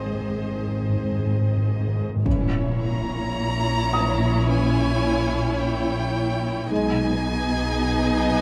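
A slow, straight 4/4 pulse at 54 BPM sets the pace for this mysterious, uneasy fragment of suspense film score, tuned slightly high to A4 = 445 Hz. A rich violin section carries the expressive, vibrato-laden melody up high, while a second violin section adds a sliding counter-line beneath it and dark, lush violas fill in the accompaniment with soft attacks. Cellos and double basses anchor the low end with smooth, bowed bass notes, supported by mellow French horns holding sustained chords until 7.1 seconds. Soft-mallet timpani play a round fill in the background until 2.2 seconds. At 2.3 seconds a huge, bright impact enters at a very quiet level. Throughout, a felt-muted upright piano adds an intimate, hushed texture with audible action noise, as the harmony moves from G# through A#dim to G#m/B under light reverb and close, detailed miking.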